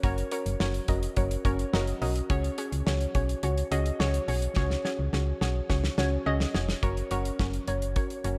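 A soft, round synth pluck with a chorus sheen carries the harmony over a punchy FM bass and a damped, dry 70s-style drum kit with a tight kick, all sitting up front in a dark, warm mix with light reverb. This bright, nostalgic synth-pop excerpt moves at 106 BPM in a straight 4/4 in F# major, shifting from F# to C#sus4 at 2.3 seconds. A drum fill runs from 4.6 to 6.8 seconds, leading into a new section that lands back on F#.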